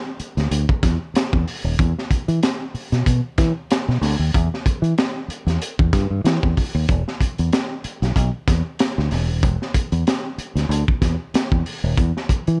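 A lightly swung sixteenth-note groove in 4/4 drives this short funk cut, lifted from a longer piece, with a funky, hypnotic pull that never lets up. A crunchy breakbeat drum kit of hi-hat, kick and high-tuned snare sits up front, its tight kick and dark, rolled-off top roughened by vintage 12-bit sampler grit and a saturated edge. Alongside it, a fingered electric bass ranges from D#1 to E3 with a round, punchy tone, direct and amped and also placed close to the listener. Both parts come in together at 0.2 seconds and hold the same single section until 12.6 seconds. Light reverb and a cassette-tape character give the whole mix a hazy, lo-fi feel.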